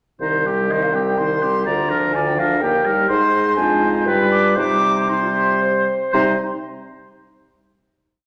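Oboe, clarinet, French horn and bassoon open together at 0.2 s in an urgent, stormy classical-period movement for wind quintet in triple time, the warm oboe with light vibrato and the clear clarinet and smooth-topped horn sharing a rocking two-note figure and sustained chords beneath the mellow, up-front bassoon bass. At 0.7 s the silver concert flute takes the melody with an airy, straight tone and crisp attack, while the clarinet answers at phrase ends. The theme slows from 2.4 s before closing on a final chord that rings in a reverberant recital hall.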